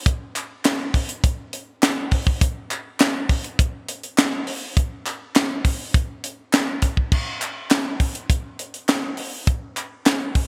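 Late-night and danceable, this short funk excerpt moves at 102 BPM in a straight 4/4 feel, cut from a longer piece. A tight funk drum kit carries the groove from 0.1 to 10.5 seconds, sitting up front with a mid-forward, acoustic sound, a high-tuned snare, a tight kick, hi-hat, crash cymbal and handclaps, all wrapped in gated reverb. Behind it, a group handclap runs from 0.4 to 10.2 seconds, human and crisp with a compressed, saturated edge, kept well in the background. Light reverb and small room ambience frame the parts, and the production has a bright, 1980s-style digital character. The opening section gives way to a second one at 7.1 seconds.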